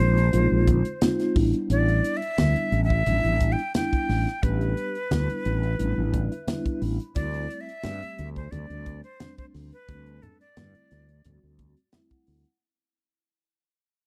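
A breathy flute with vibrato and a chiffy attack carries the soaring melody of this slick, fading electric jazz fusion excerpt at 88 BPM in a straight 4/4, over a growly, up-front fretless bass, a mellow tine electric piano with phaser that adds fills around 5.8 and 11.6 seconds, a polished drum kit with a high-tuned snare and tight kick, and low-tuned congas struck with hard hands in the background, all captured in a dry, close 1970s-style studio sound as the suspended chords move from Bb9sus4 through A9sus4 to D9sus4.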